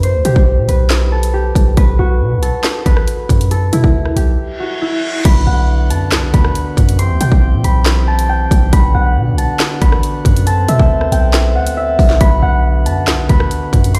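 A half-time drill groove at 138 BPM pushes an up-front electronic kit of hard-clipped kick, sharp snare, hi-hat, handclaps, rim clicks and crash, locked to a punchy, heavy 808-style sine bass with a noise layer, fast attack and decaying tail, setting a cold, dark mood in B phrygian. Over it, a thumb-plucked concert harp carries the ringing acoustic melody through a low-pass filter and digital delay. During a break that begins at 4.4 s, an electronic reverse cymbal enters at 4.5 s and leads into the section at 5.2 s, where light, bright pipe organ flute stops add sustained baroque-voiced chords, all heard as if played on a big sound system in a bare stone room.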